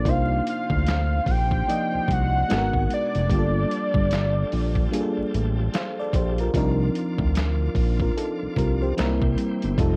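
A fat, detuned sawtooth lead with vibrato carries a brief melody over a mellow FM electric piano and a thick, wave-folded analog bass from the start of this sultry neo-soul R&B piece. It moves at a swung 74 BPM in C dorian through Cm11, Abm9 and Gm9. Gritty, pitched-down boom bap sampler drums with a thumpy kick arrive at 0.1 s alongside a bright, lightly overdriven tonewheel organ sitting low in the mix through a slow rotary speaker, and the lead drops out at 5.3 s, while cassette tape grain and vinyl crackle give the dry home recording its soulful, worn character.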